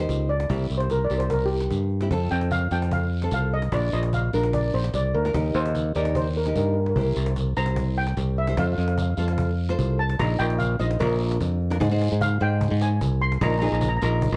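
A carefree, sunny calypso fragment, cut from a longer piece, where a mellow, shimmering steel pan struck with soft rubber sticks carries the solo melody over fingerpicked classical nylon-string guitar, a growly, up-front fingered electric bass, a woody cajon with faint snares in the background and a raspy guiro, all heard through a worn, warbling cassette tape sound with pitch drift, a dulled top end and light reverb, with plate reverb on the pan and a late turn to an Ab chord at 11.8 seconds.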